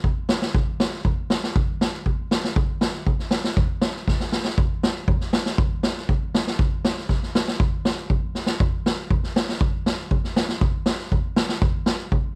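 This klezmer excerpt is a soulful, bittersweet passage at 119 BPM in a straight 2/4, carried entirely by a street-band drum kit of kick and snare that plays from 0.0 to 12.2 seconds. The acoustic kit sits up front in a small room with light reverb, its boomy kick and medium-tuned snare giving a mid-forward sound with a rolled-off top. Drum fills arrive at 4.1 and 8.4 seconds.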